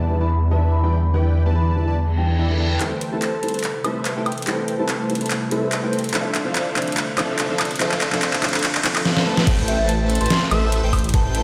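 This bright, euphoric future bass cut opens at 144 BPM with a swung half-time feel: an ethereal pad in the background, a fat, bold polysynth riff and a thick, detuned saw bass, all pumping to the sidechain, soon joined by felt-muted upright piano and a ringing, soft-mallet vibraphone melody, both carried on tape echo. A very quiet reverse cymbal and riser slip in just before 2.8 seconds, when an up-front dubstep kit with deep snare, metallic hats, handclaps and woodblock arrives as the polysynth's filter sweeps through a build over Am7 and Dm7. The drop lands at 9.5 seconds with a knocking electronic kick, the returning bass and vibraphone, and a dreamy, phased lead arpeggiating high in the background, all set in lush hall reverb with a stony room ambience.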